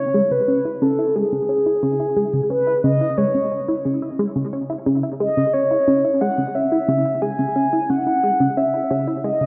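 Expansive and hypnotic, this short ambient excerpt at 89 BPM in C# minor pairs a mellow, round horn-like synth lead with vibrato, carrying the melody between G#4 and G#5 over a tight, driving sequenced synth riff with a wave-folded filter pluck and phaser, while a filter sweep moves across the arpeggio sound throughout and a wet concert hall reverb bathes the whole passage in digital ambience.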